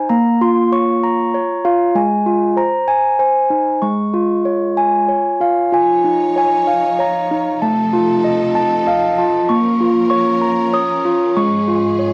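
This children's lullaby moves at 96 BPM in a gentle, rubato 3/4, with a tender and innocent mood in D-flat major. Handbells carry the melody from the start, their soft clappers giving a mellow, ringing tone that sits up front in the mix. At 5.7 seconds a studio string section enters beneath them with sustained, bowed chords, its focused ensemble sound marked by vibrato and a smooth top, kept low behind the bells. The harmony drifts through Bbm, Fm/Ab and Ab before settling on Db, then turns through Dbadd9 and F7/C and back to Bbm and Db/Ab as the strings fill out the second phrase. Light reverb and a dark, warm production wrap this short cut from a longer piece in a soft, bedtime glow.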